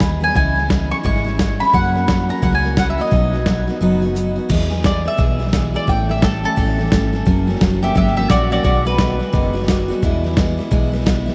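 Honky-tonk and classic country with a heartfelt, easygoing swing, this short excerpt sits in a vast, echoing cathedral-like space. A woody mandolin with its double strings carries the melody up front, beside a bright, full-bodied picked dreadnought acoustic guitar picking out the accompaniment on fresh strings. Underneath, a vintage fingered electric bass gives a dark, round, foam-muted tone. The lo-fi sampler-style drum kit sounds muffled, compressed and pitched down, with a thumpy kick, a medium-tuned snare, hi-hat and crash cymbal, all pushed through overdrive. The kick and snare drop out at 3.8 seconds, and at 4.5 seconds the mandolin takes a solo over changes that move through E, A, F# and B6 until it stops at 9.9 seconds, leaving guitar, bass and drums to close the passage.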